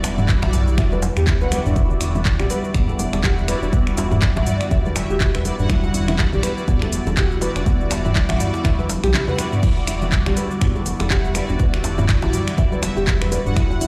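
Driving and spiritual, this afro house excerpt layers a woody, thumb-plucked nylon-string guitar's arpeggios, mellow synth brass stabs with chorus, phaser and tape echo, a round, deep analog bass with tube saturation, and a very quiet ethereal pad holding an Em9 chord over a punchy electronic kick, an overdriven afro-pop kit with metallic hats, snaps, claps and shaker, soft-handed congas and djembe, and a drum fill at 8.9 seconds, the guitar, brass and bass all pumping to the kick.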